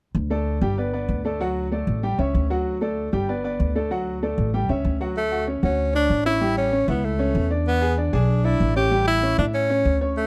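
A dry, close recording in a small room, with a 1970s studio flavor, frames this sunny, festive salsa fragment, cut from a longer piece. It moves at a brisk 192 BPM in a straight 4/4 in D major, and all three instruments sit up front. The upright bass opens at 0.1 seconds with woody, thumpy pizzicato on steel strings, and the grand piano follows at 0.3 seconds with a clear, slightly boxy accompaniment of short sustain over a loop of D, G and A7. At 5.2 seconds the music shifts to a new passage built on Dmaj7, A7 and E7, and a bright tenor saxophone takes the solo melody there. Close-miked and played in a pop style with vibrato, the saxophone gives this excerpt its celebratory lift.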